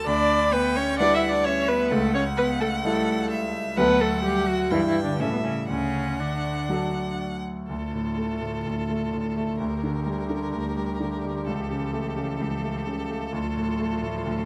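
Light reverb gives this lively, spirited passage from a quick classical-period piano quartet movement a gentle sense of space, with the concert grand up front, open and deep in the bass with long sustain. At 128 BPM in 4/4 with a rubato feel, a clear, smooth bowed violin carries the melody with vibrato over the piano and a rich, even viola in accompaniment, while a focused cello sings a second line in the background. The music moves from D major into D minor at 7.7 s, keeping its energetic drive through the cut-off at 14.5 s.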